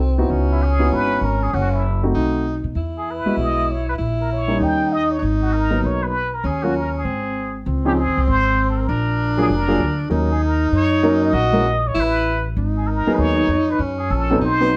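Smoky and moody, this fragment of small-group swing and bop moves at 196 BPM in G# minor, with a punchy plunger-muted trumpet carrying the wah-wah melody over a tenor saxophone second line of subtone and vibrato, a woody, thumpy gut-string upright bass played pizzicato, and warm, short-sustained grand piano accompaniment, inside a moderate large-studio reverb.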